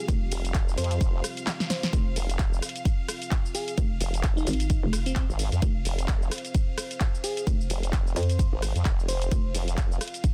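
Aggressive and swaggering, this bass house cut pairs a hollow, bouncy FM bass and a detuned formant-sweep wobble bass, both up front with sidechain pumping, against a punchy electronic kick and a house kit of handclaps, snare, bright hats, ride, rim click and shaker that plays a fill at 1.5 seconds, while a sparkling bell-like FM electric piano carries the melody over a moody analog pad and a bowed string section sitting in the background beneath digital ambience and a dense, heavily limited master.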